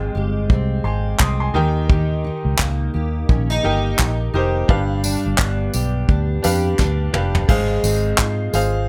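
Heartfelt and easy-going, this acoustic pop excerpt at 86 BPM in 4/4 swings its sixteenths over Fmadd9, Eb, G7 and Fm/Ab, with fingerpicked, full-bodied double-tracked steel-string guitar, a brilliant, woody upright piano bathed in plate reverb, a round, punchy foam-muted electric bass up front, an up-front soft brush kit with a fat snare and dark cymbals entering at 0.5 s and rolling through a fill from 6.8 to 7.5 s, and very quiet, crisp group handclaps from 1.2 s.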